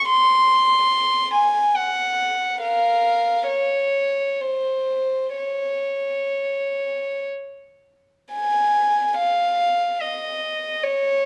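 Classical solo violin in Db major, an expressive fragment cut from a longer piece, moving freely in 3/4 with rubato between 49 and 74 BPM. A single dark, floating violin is bowed sul tasto with soft attacks and a pure, smooth top, ranging from Bb4 to C6 and shifting to new material at 8.3 seconds. Placed up front in a moderate recital-hall reverb, the playing feels serene and nostalgic.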